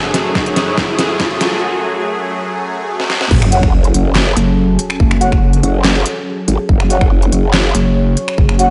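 Heavy and aggressive, this half-time wobble dubstep excerpt opens with a lush, detuned supersaw pad holding an F#madd9 chord through a phaser, a low-pass filter and sidechain pumping, while a riser and sub drop sit in the background during the build-up. A drum fill and riser lead into a brief break, and another fill at 3.0 seconds sets up the drop. At 3.3 seconds a growling, detuned bass with formant filtering, chorus and overdrive slams in alongside an impact. Soon after, dark, distant brass stabs arrive through an analog delay. A distorted, pulsing pluck wobble bass joins at 4.4 seconds, sitting up front with the growl and a punchy, tape-warm electronic kick. The dubstep kit adds a deep snare, crisp hats, claps, snaps and crashes in a small room, all set in a dreamy mix soaked in lush hall reverb.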